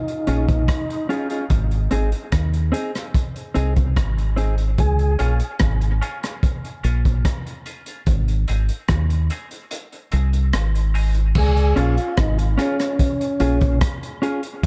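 A dark, hazy mix with light reverb and a small-room feel frames this slow, spacious dub reggae passage in Db major at 73 BPM, moving between Db and Ab chords. Up front sit a deep, round fingered bass and a gritty, saturated breakbeat kit with a punchy kick, hi-hat, rim clicks and rolled-off crash cymbal. Beneath them a clean, compressed electric guitar carries the accompaniment through a high-pass filter, dub echo and a long filter sweep, while a mellow tonewheel organ, lightly overdriven through a fast rotary speaker and dub echo, plays the melody in two spans, the second beginning at 11.4 seconds as the kick returns after falling silent from 9.7 seconds.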